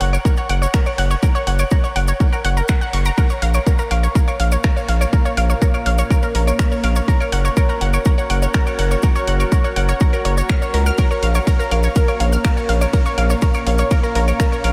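A detuned sawtooth pluck opens the track with lush, punchy arpeggios that ring high, pulsing under sidechain pumping and trailed by tape echo, while a round analog bass sits up front with a deep, mellow sustain. This melancholic, dramatic stretch of melodic techno, cut from a longer piece, moves in a straight 4/4 pulse as a punchy electronic kick, tape-warm and re-recorded in a large room, arrives at 0.3 seconds. A house kit of claves, finger snaps, hi-hat and ride cymbal adds layered detail, with grainy maracas tucked in the background. At 4.3 seconds a deep, moody pad enters with slow-attack sustained chords, its evolving sawtooth and sub-octave layers bathed in chorus and its own reverb. The harmony alternates between Gb and Bb minor, and the whole mix is soaked in a huge, dreamy ambient reverb with a 7.1-second tail.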